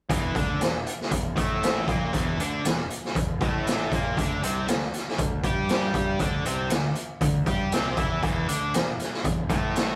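A rough rehearsal-room recording with light reverb captures a brooding, smoky blues rock power trio with a southern rock lean, as a tight, bright, double-tracked distorted guitar riff sits up front over a growly, fuzzy, overdriven picked bass and a raw garage drum kit whose boomy kick, medium-tuned snare and gritty, saturated sound with a rolled-off top also sit up front, the harmony shifting from A#maj7#11/E to Cadd9 and back in this fragment cut from a longer piece.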